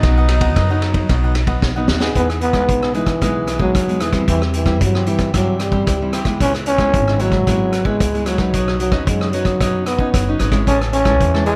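A straight 4/4 samba and choro groove at 113 BPM in E major sets a playful, joyful mood, built on a vintage drum kit with dark cymbals, a high-tuned snare and a tight kick sitting up front beside a woody, thumpy pizzicato upright bass, while crisp picked cavaquinho and fingerpicked classical nylon-string guitar fill out the accompaniment. A breathy tenor saxophone plays a subtone solo with light vibrato at the start as a drum fill leads into the growling, raspy trombone melody, which carries scooped jazz phrasing from 2.2 seconds. The saxophone returns as a second line at 10.7 seconds, in a room touched by light reverb.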